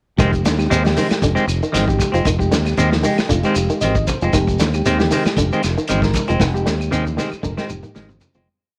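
Lightly reverberant and lo-fi, this short, hypnotic and intense afrobeat piece grooves at 116 BPM in F dorian over a single Fm7 chord. An up-front, growly fingered bass riff and a muffled vintage kit with a tight kick anchor the groove, joined by dark, clean stabs from a semi-hollow guitar, a twangy, slightly broken-up guitar ostinato in the background, and syncopated rootless stabs from a reedy, worn, slightly out-of-tune electric piano. Woody claves tap a five-stroke time line beneath grainy shekere and very quiet, ringing low-tuned congas; the electric piano adds fills from 2.8 seconds, and a drum fill arrives as the piece fades out from 6.4 to 8.5 seconds.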